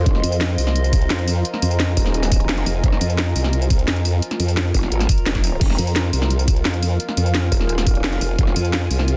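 A dense, heavily limited modern mix with light reverb carries this tense, mechanical stretch of dark technical drum and bass, cut from a longer piece and sitting on a single F minor chord. Up front, a growling, saturated growl bass and a detuned sawtooth formant-sweep wobble bass churn through their formant filters. A layered electronic kick knocks beneath a small-room drum kit of cracking snare, bright hats, crash and tambourine. In the background, a deep, moody ambient pad and a warbling, lo-fi tape-like pad with phaser breathe with sidechain pumping.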